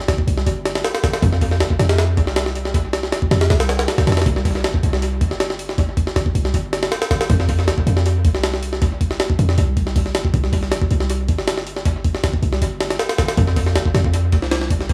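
Drum and bass in a jungle style, this short passage is cut from a longer piece and carries a dark, nostalgic mood at 158 BPM in a straight 4/4, tuned to A4 = 439 Hz. A sampler-style jungle kit opens at 0.0 seconds, its hi-hat, thumpy kick and high-tuned snare sounding compressed, pitched up and gritty, placed up front with a small room ambience and dub echo. An 808-style bass joins at 0.1 seconds, moving between F1 and F2 with a deep, boomy sine tone, a noise layer, a fast attack and a mellow decay. Both parts play through to 14.9 seconds within a single section. Light reverb and digital ambience give the echo-heavy mix a sense of space.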